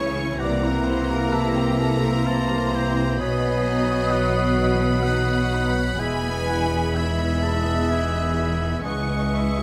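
A rich, smooth cello section anchors this tender, lyrical excerpt from a slow romantic orchestral movement in E major, moving at 64 BPM in a rubato 3/4 with a focused double bass section beneath it. A close, lush violin section carries the vibrato-laden melody. A second violin section, a distant, roomy oboe, a pure, hollow silver flute and a warm clarinet weave second lines around it, while a very quiet viola section, a mellow bassoon, vintage-toned French horns holding sustained chords and a ringing, fingerpicked harp supply the accompaniment. A moderate stone-room reverb surrounds the ensemble as the harmony moves through C7, B, E and C#m across its 9.6 seconds.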